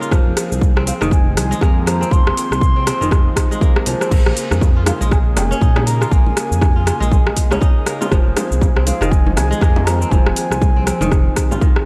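A detuned analog pad, a crisp, ringing fingerpicked kora with tape echo and an afro-pop kit of metallic hats, rim click, shaker and crash open this hypnotic, swung afro house fragment, with the pad, kora and a dark, gliding sawtooth bass with tube saturation all pumping against a punchy, up-front electronic kick. A pure, hollow bamboo bansuri with vibrato and tape echo enters at 0.9 seconds, and round, low-tuned bongos played with soft hands join in the background at 4.5 seconds. Small-room ambience on the drums and a dark digital space give the whole mix a warm, enveloping depth.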